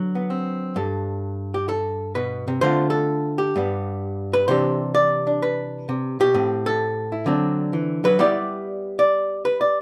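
Solo jazz guitar carries this short, swinging passage cut from a longer piece, with a sophisticated mood and a lilting swung-eighth feel in four. A lone electric archtop, miked and amplified, plays throughout, its clean, picked hollow-body tone dark and placed up front. It ranges from low bass notes up into the upper register, voicing a harmonic path that opens on D6, settles on Gadd9 at 0.8 seconds, then moves through Dm7, Cmaj9, Am7 and D7 before landing on G6. A light reverb gives the guitar a little room around it, and a faint mains hum sits underneath. The whole clip runs just under ten seconds.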